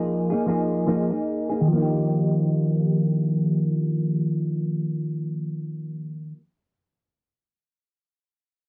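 Dreamy and nostalgic, this short excerpt of indie pop sits at a slow 75 BPM in Eb major with a lightly swung feel. A lone semi-hollow electric guitar plays clean, picked accompaniment, its compressed, hollow-body tone placed up front and colored by analog chorus, vibrato, a low-pass filter and cassette tape character. A filter sweep shapes the guitar over the opening 1.7 seconds on a Bb7sus4/F chord before it settles onto Ebadd9, all in a small booth-like room from a home cassette recording.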